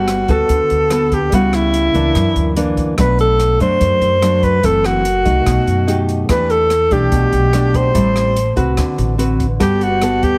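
Sunny and breezy, this bossa nova excerpt moves at 145 BPM in a straight 4/4, with a breathy, clear alto saxophone singing the lead up front with vibrato and a smooth top. A full-bodied, fingerpicked nylon-string guitar also sits up front over a woody pizzicato upright bass, while an open jazz kit adds hi-hat, rim click and a boomy kick through chords that run from Gmaj9 through Bm7 and Em7 back to Gmaj9. Light reverb and a heavily compressed, radio-like sound frame the whole, which is cut from a longer piece.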